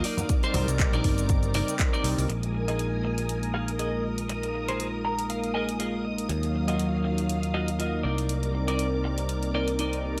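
A smooth sawtooth pad with chorus and slapback echo opens this sunny, feel-good nu-disco excerpt, joined at once by a lush, full-bodied string machine playing sustained chords, a clean, compressed electric guitar riff, and a house drum kit of handclaps, hi-hat and shaker. Very quiet, band-limited congas with soft hands and a punchy, layered electronic kick appear only briefly near the start. A growly picked electric bass, up front with tube saturation and sidechain pumping, enters at 0.5 seconds and stays to the end. From 2.3 seconds the pad carries a filter sweep as the chords shift from Cm9 to Bb7sus4, then on to Ebmadd9 and back to Cm9. The guitar, softened by a low-pass filter and lush chorus, adds a short fill from 4.8 to 6.3 seconds. The string machine's vintage sampler grit and the light reverb lend the mix a retro touch over a lightly swung groove.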